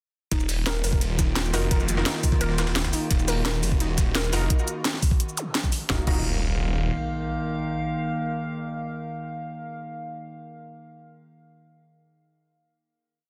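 A snarling, distorted saw bass opens the piece at 0.3 seconds with a tight technical drum and bass kit, a knocking electronic kick and a gritty, pitched-up jungle breakbeat looped with edits in the background, all straight into a dark, futuristic drop. Up front, the bass growls through chopped phrases with tube saturation and a moving notch, while the overdriven kit adds a cracking snare, bright hats, shaker and crashes. Behind them, a warbly, dusty pluck cycles a five-step arpeggio that drifts against the bar, softened by cassette tape, chorus and tape echo, and pumps against the kick. An eerie, metallic drone of inharmonic ring-modulated chords fades in slowly beneath, and bold, orchestra-hit-like stabs punch in sparingly, moving one chord shape in parallel with reverb and echo trails. From 5.9 seconds, as the drums drop out, the drone and stabs hold a final chord, dotted with background zaps and impacts, in a dense, heavily limited master with light digital ambience that keeps the mood tense.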